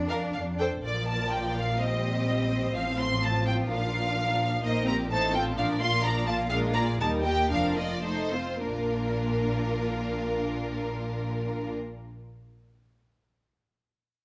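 A rubato 2/4 pulse between 99 and 130 BPM drives this graceful, lively excerpt from a classical-period movement for string orchestra in B-flat major, where a clear, up-front first violin section carries the melody over a focused second violin line, an intense viola accompaniment, a cello section sitting in the background and a bowed double bass foundation, all with vibrato, easing into a slowdown from 6.0 to 8.6 seconds before a new section begins in a recital hall's moderate reverb.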